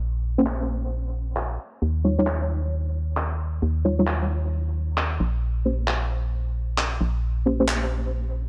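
The recording sounds dim and softly filtered, with a light reverb and a dark, rounded overall tone. This short cut from a longer two-step UK garage track has a skippy, moody feel, its swung rhythm giving the groove a lopsided bounce. An organ-like FM bass sits up front from the very start, hollow and percussive with tube saturation. Deep, mellow chord stabs enter at 0.4 seconds, soft and full-bodied, their detuned tone thickened by chorus and trailed by dub echo as the harmony moves from Eb9 to Bbm69. Layered electronic handclaps arrive at 0.5 seconds, tape-warm and recorded in a large room, with low-pass filtering on the snare and room sound. A filter sweep runs across the drums and the whole passage, keeping the mix hazy and submerged.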